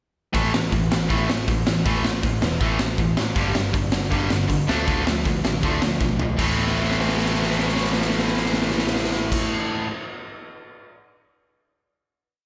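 Punk rock, raw and urgent, led by an up-front garage drum kit with a boomy kick, gritty saturated tone and a two-step groove in a bright stone room. Two overdriven electric guitars sit in the background playing palm-muted eighth-note riffs through slapback echo, while a growly, punchy picked bass drives eighth notes underneath. After a brief verse the band lands on a final chord at 6.4 seconds, the drums filling over it and then playing alone until 10.9 seconds.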